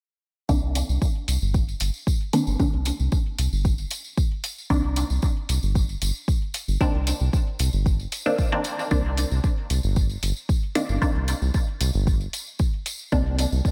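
A steady, straight pulse from a deep, tape-warm electronic kick drives this hypnotic, cavernous dub techno excerpt, with metallic electronic hi-hats entering at 0.8 seconds and a jingly, close acoustic tambourine sitting low in the mix. Up front, a round, dark analog bass pumps against the kick while muted, wave-folded dub chord stabs on a Cm9 chord pluck through a phaser and trailing dub echo, also pumping to the beat. Light reverb and digital ambience give the sound its spacious depth.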